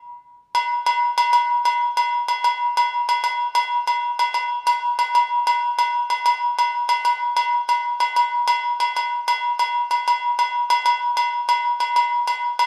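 After a brief silence, ringing agogo bells enter at 0.5 s and carry this joyful, danceable highlife excerpt in a straight 12/8 at 126 BPM. The bells sit close and up front with an acoustic sound, while a large studio reverb gives them a long, roomy tail, as if played live in one room.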